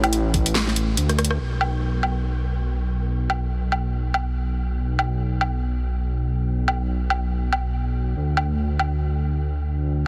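Brooding and heavy, this deep dubstep excerpt moves at 142 BPM in 4/4 with a half-time feel and a loose swing on the sixteenths. A dark detuned saw bass sits up front from the start, its deep, rumbling tone built from unison sawtooth, square and sine layers that beat against one another, with a fast attack and sustained notes between A1 and D2. The electronic drum kit is layered and produced, pairing a huge snare with metallic hats, rim clicks and woodblock, all carrying a tape-warm character. The piece opens on a drop, with a drum fill from 1.1 seconds and a band accent at 1.3 seconds leading into the next section. The drums stop at 8.9 seconds while the bass carries on alone to the end at 10.1 seconds. Light reverb surrounds the parts, and heavy multiband compression gives the whole a squashed, radio-like sound.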